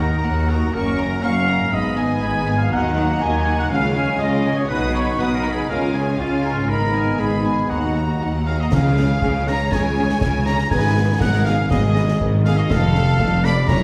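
A straight 4/4 pulse at 121 BPM drives this heroic, adventurous film-score excerpt, where a lush, focused violin section carries the melody over second lines from an airy silver flute, a clear oboe, a background violin section and a very quiet dark clarinet, with expressive viola accompaniment, mellow ringing harp arpeggios, distant trumpet stabs, smooth cello and double bass lines and background French horn chords, while hard-mallet timpani strike briefly and, from 8.7 s, as the music moves into Db mixolydian, a tuba joins with snare drum, bright clash cymbals and bass drum, the whole heard from further back in a reverberant recital hall.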